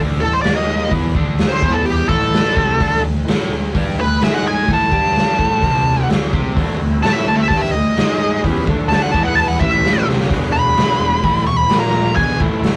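A rough rehearsal-room recording with a moderate booth ambience carries this gritty, swaggering blues rock and southern rock cut in a straight 4/4. Up front, a bluesy lead guitar solos through wah and distortion across the whole stretch, beside a punchy, saturated garage drum kit with a medium-tuned snare and rolled-off top that plays a fill at 10.1 seconds. Behind them, a double-tracked, compressed overdriven guitar riff and a round, fuzz-laden picked bass hold the low end, and a reedy tonewheel organ with key click and slow rotary speaker joins with sustained chords at 6.5 seconds.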